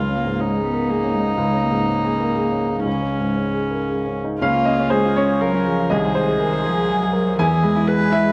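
An up-front, open baby grand piano carries the accompaniment in this tender, hopeful neoclassical excerpt in Db major, moving in a rubato 3/4 at 122 BPM, with a rich, floating bowed viola played sul tasto beside it, a dark, intimate cello with a smooth top tracing the second line with light vibrato, and a fingerpicked Celtic harp ringing out arpeggios through tape echo that pauses at 1.9 seconds and returns at 4.4 seconds as the harmony moves from Dbsus2 to E, the ensemble sitting in a moderate scoring-stage reverb.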